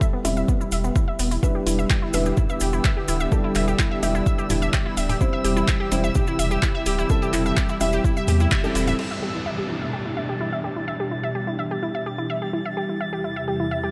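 A lightly reverberant digital space holds this expansive, driving progressive house excerpt in E minor at 127 BPM, where a punchy, detuned sawtooth pluck plays bright arpeggios under a filter sweep while a soft, felt-muted upright piano adds mellow stabs, both pumping with the sidechain and trailed by tape echo. A deep, tape-warm electronic kick sits up front with a round, nasal analog bass, joined by a deep house kit of metallic hi-hats, handclaps and crash, plus grainy cabasa and quiet, soft-handed congas. From 2.1 seconds a thick, chorused pad holds slow-attack chords over Em7 and C beneath a calm, drifting glassy overtone texture, and at 9.0 seconds the rhythm section drops away as an electronic downlifter falls through the open chords, fading by 12.8 seconds ahead of the cut at 13.9 seconds.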